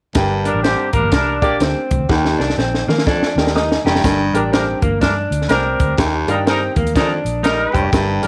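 Set in light studio reverb, this passionate, driving slice of 1960s-style swung soul has a clear, vibrato-laden baritone saxophone riff and a slightly broken-up, lo-fi electric guitar riff riding over an up-front cocktail drum kit with a punchy kick and a high-tuned snare, which plays a fill from 2.1 to 4.0 seconds, a round, foam-muted electric bass, an intimate, boxy grand piano with audible action noise, a tight vintage horn section playing a second line, and very quiet, bright congas that enter at 0.4 seconds.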